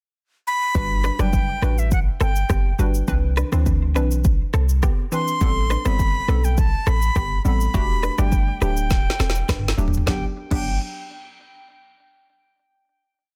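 A deep, boomy 808-style bass carries a bouncy, syncopated line with slides beneath this joyful, romantic afrobeats piece at 103 BPM in G major, alongside an up-front electronic drum kit with a woody, softly clipped snare, syncopated rim clicks and shaker, warbling detuned square-wave chords, an airy jazz flute with vibrato and tape echo tracing call-like motifs, and a twangy clean electric guitar repeating an interlocking figure in sixths in the background, all dry and densely mastered, with a drum fill at 8.9 seconds leading to a final Gmaj7 chord.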